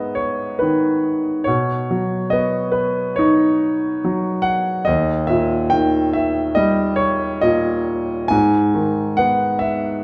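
A bright, up-front concert grand piano rings out in a recital hall with moderate reverb, its brilliant treble and deep bass heard plainly across this ten-second excerpt of a longer classical piece. Played solo in G# minor at a rubato 70 BPM in 4/4, the lyrical music has a dark, wistful mood, moving from G# minor through Badd9 and D# before settling back on G# minor at 8.3 seconds. The piano spans D#2 to G#5 and carries the whole performance alone.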